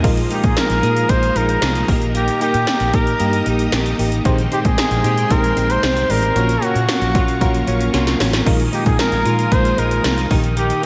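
A clear, up-front flugelhorn carries the melody from 0.3 seconds, its punchy, scooped notes shaded with light vibrato and trailed by tape and slapback echo. This short cut from a longer 1980s-style pop piece moves at 114 BPM in a straight 4/4, with a romantic, uplifting mood over sustained chords built on a Bb bass, such as Bb7sus4, Eb/Bb, Abmaj7/Bb and Gbmaj7/Bb. Beneath it, a warbling FM electric piano with tremolo and slapback echo plays accompaniment, joined by a very quiet overdriven semi-hollow guitar and a bright, twangy twelve-string electric guitar riff set back in the mix with analog chorus and tape echo. A vintage string machine playing cellos adds full, soft-attack sawtooth chords with ensemble chorus in the background, while a foam-muted, round fingered electric bass anchors the low end. Overdriven 80s electronic pad drums with a punchy kick, gated snare, metallic hats, crash and tambourine sit up front, with a fill from 7.9 to 8.5 seconds, all wrapped in a lush hall reverb for a big arena sound.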